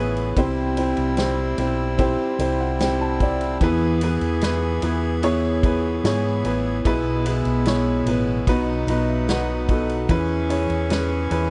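A woody, intimate upright piano with audible action noise sits up front in this heartfelt 74 BPM pop ballad in E major, adding fills at 2.0 and 8.5 seconds over a reedy accordion, very quiet full-bodied picked acoustic guitar arpeggios, a round, punchy hollow-body electric bass, a barely audible downlifter until 3.6 seconds, and a distant, roomy indie drum kit with dark cymbals, all in a dark production with light reverb.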